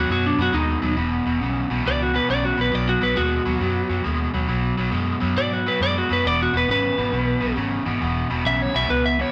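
A slightly broken-up lead guitar takes a picked, compressed solo up front across this laid-back, rollicking electric blues shuffle, which swings in 4/4 and is cut from a longer piece. Beneath it, an overdriven electric guitar plays a low picked riff, while a vintage foam-muted fingered bass adds a dark, round, punchy bottom until 9.2 seconds. The band plays live together in one room, wrapped in a wet stone-room reverb.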